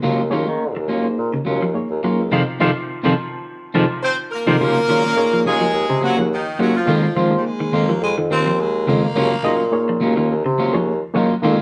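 A tight horn section carries the melody in this intense, defiant afrobeat passage, entering up front at 4.0 seconds with light vibrato and a pop phrasing, while a raspy, gritty tenor saxophone plays a forceful second line beneath it. At 7.4 seconds a baritone saxophone takes over that second line, its scooped notes and vibrato sounding distant and roomy. Underneath, a mellow, vintage-toned bassoon holds down the bass in a classical style. Two electric guitars run through the whole cut, one clean and picked playing arpeggios with spring reverb, the other dark and fingered at the edge of break-up playing stabs, while a reedy electric piano with fast tremolo sits in the background. The band plays live in one room at a straight 105 BPM in Eb dorian, moving between Ebm9 and Fm7 with a band accent at 2.3 seconds, in an excerpt cut from a longer piece.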